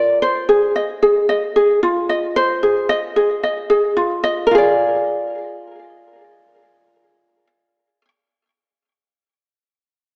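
A lightly swung sixteenth-note feel in 4/4 at 112 BPM carries this delicate, pastoral folktronica excerpt in B-flat mixolydian, tuned to A4 = 439 Hz, where a solo fingerpicked acoustic ukulele, mellow and up front, moves between F4 and Eb5 from an Ab6 chord to a rootless Bb7 at 4.5 seconds before stopping at 8.1 seconds, all bathed in a wet scoring-stage reverb with a 1.7-second tail and heard through a small-speaker sound.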